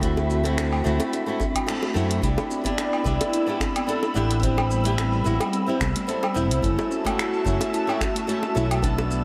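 Relaxed and warm, this sunset chillout excerpt moves at 109 BPM in C lydian with a gentle 16th-note swing, its dreamy mix soaked in a lush hall reverb. An up-front fretless electric bass with subtle chorus anchors a bright, fingerpicked flamenco guitar with audible finger squeak and delay, while a breathy, detuned pad holds sustained chords, a woody kalimba rings out delayed arpeggios in the background, and a dark, wind-like tuned noise texture drifts high above. A deep analog electronic kick and a tape-warm deep house kit of finger snaps, hi-hat, shaker and woodblock carry the groove alongside tight, high-tuned bongos that enter at 0.2 seconds, with a band accent landing at 1.7 seconds as the chords move from D9 through Cmaj9 and Am9 to F#m7.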